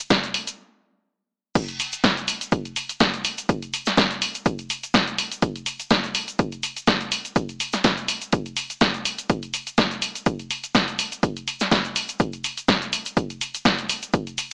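A punchy analog drum machine leads this sunny, feel-good house excerpt at 124 BPM in 4/4, its tape-warm snare, crash cymbal, hi-hat and shaker sitting up front with a gentle 16th-note swing. An electronic kick drum with a similarly analog, up-front character anchors the groove beneath it. Barely audible in the background, an acoustic egg shaker layered with a group handclap adds a small-room texture. After a brief opening, the music halts at 0.6 seconds and then drops back in at 1.6 seconds, carrying the full beat through to the end. The sound is dry and gritty, like hardware heard through a small speaker, touched by only a light digital ambience.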